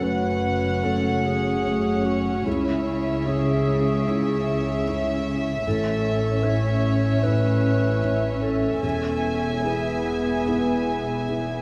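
Played rubato around 74 BPM in 4/4, this cinematic passage in F# minor, cut from a longer piece, carries a moving, sorrowful mood as it moves through F#m, C#m, A and E. A warm studio violin section holds the melody high and close, its soft sul tasto tone pure and floating, while a dark chamber violin section beneath it adds a second line with gentle vibrato and a smooth top. A distant, roomy solo clarinet in a classical style traces another second line. A felt-muted upright piano accompanies with a mellow, intimate sound, its thick felt and audible action noise giving it a natural character. A woody, lush symphonic viola section sits in the background, while a very quiet yet present, tight French horn section sustains chords with light vibrato. At the bottom, a shadowy double bass section and a soft-attacked symphonic cello section share the bass, the basses sounding far off and the cellos sitting back in the mix, all within a moderate scoring stage reverb.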